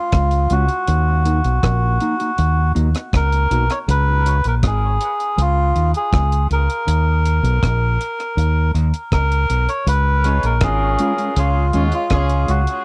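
Spacious and meditative, this dub reggae excerpt moves at 80 BPM in 4/4, with a reedy, breathy melodica carrying the melody up front through dub echo, plate reverb and cassette tape grit. Beneath it, a round, punchy fingered bass and a tight-kicked, dry drum kit of hi-hat, kick and rim click sit alongside a dark, clean electric guitar in the background, which is treated with lush chorus and given a filter sweep from 0.9 to 9.9 seconds as the harmony alternates between Db and Ebm. A clear, vintage horn section adds a second line from 10.2 seconds, all within the light-reverb feel of a home cassette recording.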